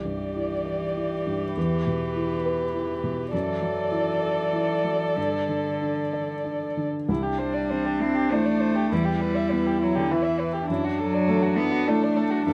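A rubato feel in 3/4, drifting between 92 and 103 BPM, carries this tender, hopeful neoclassical piece for piano and strings, cut from a longer work and tuned to A4 = 443 Hz. A felt-muted upright piano sits up front with a soft, mellow, intimate tone, its thick felt giving the accompaniment a hushed quality across a range from C2 to E5. Above it, a single dark violin carries the melody between E4 and E5, played sul tasto with vibrato for a woody, smooth top. A solo viola adds close, airy accompaniment with light vibrato and a soft attack, while a lone cello traces a pure, floating second line from D3 to C4 that sounds somewhat distant. The four parts play together for the full 12.5 seconds over a gentle cycle of Cadd9, Em, Dadd9/F# and Gsus2, with a new phrase beginning on Cadd9 at 7.1 seconds. A moderate studio reverb of about 0.6 seconds lends the ensemble a warm sense of space.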